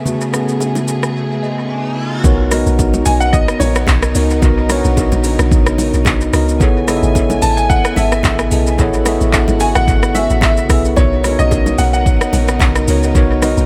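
Amapiano at 110 BPM in B major with a warm, relaxed feel, this excerpt opens on a bell-like tine electric piano and background strings with sidechain pumping over a produced afro-pop kit of deep kick, metallic hats, handclaps, rim click and shaker, plus very quiet congas and bongos, before a riser and electric piano fill lead into a drop at 2.2 seconds where a deep, round log drum bass enters, followed at 3.1 seconds by a clear, worn grand piano melody, the electric piano, drums and piano all soaked in dub echo in a dry, echo-heavy mix.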